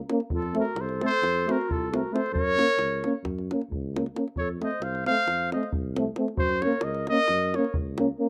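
Balkan brass band folk in a restless, bittersweet 9/8, this short cut from a longer piece alternates between F and Gb chords. A punchy, up-front trumpet carries the melody with light vibrato, while a dark, distant clarinet plays a second line and two euphoniums, one mellow with a soft attack and one warm and roomy, hold the accompaniment under plate reverb. A vibrato-tinged tuba anchors the bass and a tight, close, dry davul drives the percussion, all in a rough home-demo mix set in a small room.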